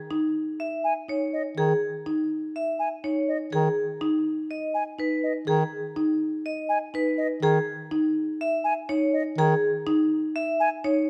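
Close, detailed microphones and a moderate recital-hall reverb frame this bright, propulsive excerpt of minimalist classical pattern music, where woody, airy marimba arpeggios open the texture, a metallic, ringing vibraphone with hard mallets and motor vibrato carries the melody with a boxy small-room colour, pure, expressive flute arpeggios with vibrato join at 0.8 seconds, and a warm, soft-attacked bass clarinet plays its accompaniment on a single low note from 1.6 to 9.5 seconds.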